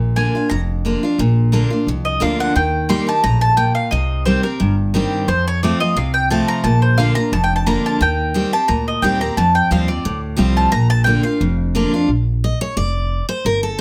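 A light reverb gives this short, lively bluegrass cut from a longer piece a touch of room around its rustic acoustic trio, in a straight four-beat feel. The mandolin carries the melody up front from 0.2 seconds, its picked double strings ringing with a woody tone high in its range. Beneath it, a bright, full-bodied dreadnought steel-string guitar, also up front, picks the accompaniment across a broad span of its register. An upright bass plays pizzicato on steel strings, its warm low notes giving the chords their foundation. The mandolin stops at 11.6 seconds, and from 12.1 seconds the guitar takes a brief solo.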